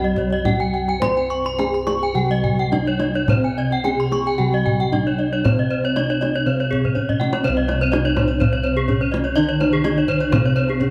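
This Balinese gamelan excerpt, taken from a longer piece, moves at 106 to 125 BPM in a straight 4/4 and carries a brilliant, shimmering mood in a pelog scale centred on C, tuned to A4 = 435 Hz. A bronze metallophone struck with padded disc mallets carries the melody in a mellow, soft voice, while a second metallophone sits in the background with a dark, smooth accompaniment in the lower register. Two more metallophones played with horn mallets spin arpeggios high above: one has a boxy, small-room character, and the other sounds bright and airy. All four metallophones use paired tuning, so their ringing notes shimmer with beating tones. Bossed gongs anchor the bass with a round, vintage, band-limited sound, and a tight kendang played with soft hands in a live room drives the rhythm, breaking into a fill from 6.8 to 7.5 seconds as the piece shifts into a new section. A light reverb surrounds the ensemble throughout.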